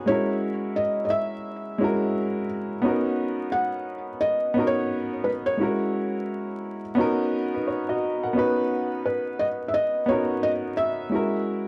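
A felt-muted upright piano carries the melody from 0.1 seconds, its soft, intimate tone sitting up front with audible action noise, short sustain and a touch of tape echo. Beneath it, a second upright piano plays accompaniment with a woody, smooth, vintage character and long sustain, bathed in plate reverb. This dreamy, mellow hip hop piece moves with a relaxed swing on the sixteenths, its harmony drifting between dominant seventh and major seventh and ninth colours. After the opening passage, a new section begins at 8.4 seconds and runs to the cut at 11.7 seconds. Vinyl crackle and a short studio reverb wrap both pianos in a hazy, lived-in atmosphere.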